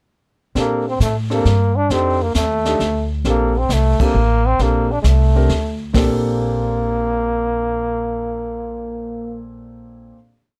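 Small-group swing jazz in a relaxed, sophisticated 3/4 at 133 BPM in Bb major, with a bright, punchy trombone carrying a motif-based melody with light vibrato up front, a warm grand piano comping with syncopated rootless voicings, a woody pizzicato upright bass walking beneath, and a distant, roomy brush kit with dark cymbals and snare sweeps. After a band accent at 3.9 seconds, the piece settles on a final chord from 5.9 seconds in a dry room, and the brush kit drops out shortly after, at 6.4 seconds.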